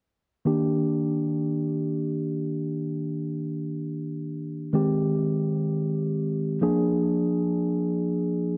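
Groovy and feel-good, this short nu-disco fragment, cut from a longer piece, floats in free time on a lone electric piano. The mellow tine electric piano carries the accompaniment from 0.5 s to 8.6 s, sitting clean, direct and up front in the mix, its tone warm and mellow across a range from Eb3 to Ab4. A digital delay trails the piano's chords, while a moderate plate reverb with a long 3.5-second decay gives the sound a glossy halo. The harmony moves from Ebmaj7 to Abmaj7 at 4.7 s, then lands on Bb7 at 6.6 s. The master is dense and heavily limited in a modern style, giving the solitary keyboard a polished, compact sheen.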